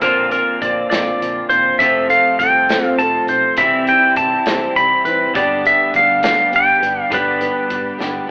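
Folk rock with a heartland rock bent, this nostalgic, warm passage moves at 68 BPM in a straight 6/8, a short cut from a longer piece. An up-front pedal steel guitar carries the melody with a bright, clean gleam, played with fingerpicks and slide and shaped by volume swells, over a woody picked acoustic guitar on old strings and a twangy twelve-string electric riff. A fingered electric bass sits dark and round in the background, while an airy, polished country drum kit with a punchy kick and medium-tuned snare keeps time until a drum fill at 8.0 seconds. A clear symphonic string section enters at 1.8 seconds, holding very quiet sustained chords with light vibrato and a smooth top. The harmony steps through Bbadd9, F, C and G, and the band sounds as if playing live in one room with moderate large studio reverb, all filtered through an AM radio sound.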